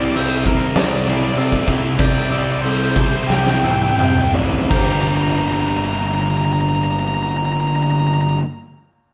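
A live band fills a wet stone room with heavy, saturated sound in this melancholic, cathartic post-rock fragment in G minor, moving in 4/4 at roughly 81-101 BPM and slowing over the first 4.7 seconds. Up front, a double-tracked sludgy guitar grinds out an overdriven riff while a fuzz-drenched picked bass anchors the low end. An oversized, low-tuned drum kit with a boomy kick, fat snare and dark cymbals pumps against the room and rolls through a fill from 3.3 seconds before dropping out at 4.9 seconds. Above this, a bluesy distorted lead guitar carries the melody, and a very quiet, twangy pedal steel adds bright, compressed sustained chords with slide and volume swells. A mellow glockenspiel played with rubber mallets rings soft arpeggios in the background until 5.1 seconds, as the harmony shifts from Cadd9 to G minor at 4.7 seconds.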